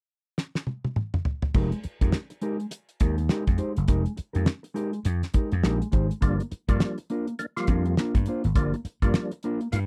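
Dry and close, this 1970s-style studio recording, cut from a longer piece, carries a hypnotic, funky groove at 103 BPM in 4/4, with a 16th-note swing and an F dorian feel. A damped drum kit opens with a fill at 0.4 seconds, its fat snare, tight kick and dark cymbals sitting up front alongside hi-hat, crash and toms. At 1.5 seconds the music settles onto an Fm11 chord as a clean, fingered electric guitar adds shadowy accompaniment further back in the mix, and a moment later a growly, punchy slap bass, amped and up front, anchors the low end. At 6.2 seconds the harmony moves to Gm7 and a round, mellow tonewheel organ enters with percussive stabs, its key click and third-harmonic percussion colored by chorus vibrato and a fast rotary speaker. The whole passage stays tight and hypnotic, built on the weight of drums and bass.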